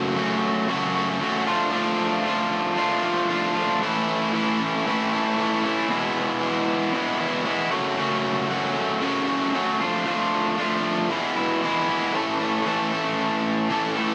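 Rock at 115 BPM in A major, wistful yet carefree: a raw garage electric guitar plays alone from 0.0 to 14.1 seconds, bright, overdriven, picked and double-tracked up front, spanning E2 to A4 over moderate spring reverb as it moves through F#m, Dm/F, A and E before settling on A at 12.1 seconds in this short cut from a longer piece.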